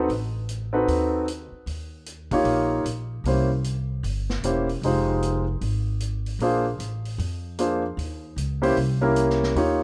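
Piano and upright bass open this energetic big band swing excerpt together, with a vintage drum kit joining at 0.1 seconds. The tune moves at 152 BPM in 4/4 with swung eighth notes, centred in Eb mixolydian. The concert grand piano comps up front with an intimate, natural tone, long sustain and audible action noise. The pizzicato upright bass sits equally forward, sounding woody and growly. Further back, the drums play hi-hat, kick and snare, giving a punchy, gritty, saturated sound with a rolled-off top. Light reverb and small room ambience give it the rough feel of a home demo as the harmony cycles through Adim7, Eb7, C7b9, Fm7 and Bb7 before the clip ends at 9.8 seconds.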